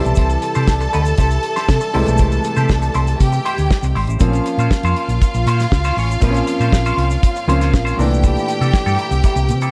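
Disco at its most joyful and celebratory, this short cut from a longer piece rides a damped 70s drum kit with a fat snare and tight kick, a round, dark hollow-body bass up front from 0.1 seconds, bright picked semi-hollow guitar through wah, a worn grand piano in support underneath, a lush bowed string section with vibrato carrying the second line, and a grainy tube shaker tucked in the background, all in a small room with light reverb as the harmony moves from C to Bbmadd9 at 4.2 seconds and lands on C13 at 8.0 seconds.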